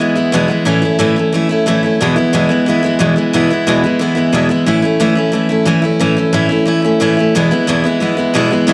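A straight 4/4 rock pulse at 180 BPM drives this rowdy, retro excerpt in E major, where a bright, full-bodied picked steel-string dreadnought acoustic guitar plays solo and up front from E2 to E4 across 8.7 seconds, moving between E and A chords inside a moderate echo chamber reverb with small room ambience.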